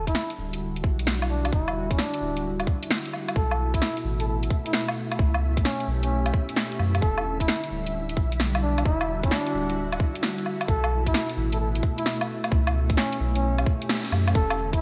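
A veiled, bucket-muted trumpet carries the melody in a whispered jazz style, its soft-attacked, scooped notes sounding intimate and breathy through a digital delay. This ghostly, nocturnal future garage excerpt, cut from a longer piece, rides a swung sixteenth-note feel. An airy pad holds mellow, detuned chords moving between Em9, B7sus4 and A9, its chorus and vintage 12-bit sampler grit pumping against the beat, while a round, sine-like sub bass with tube saturation pumps deep beneath it. Up front, a tight electronic kick and a layered garage kit of cabasa, hi-hat, cracking snare and woodblock sit in studio reverb, and a very quiet, flickering granular texture glimmers in the background. The kick drops out at 13.9 seconds on a band accent, and the whole mix sits in a lush hall reverb with bright 1980s-style digital sheen and vinyl crackle.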